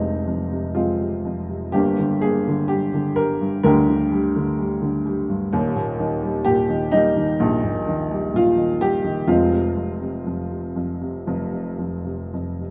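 A close sound with light reverb frames this brief classical fragment, cut from a longer piece. A lone baby grand piano sits up front, its tone dark, mellow, worn and boxy, with audible action noise and short sustain that make it feel intimate. The playing is lyrical and rubato, moving in a slow 4/4 at around 54-65 BPM in F dorian, tuned to A4 = 441 Hz, and ranging from Eb1 up to Bb4. The harmony opens on Fm, shifts to Gm at 1.7 seconds, settles on Eb at 5.5 seconds, and returns to Fm at 9.3 seconds before the piece is cut off at 12.7 seconds. The mood is melancholic and shadowed throughout.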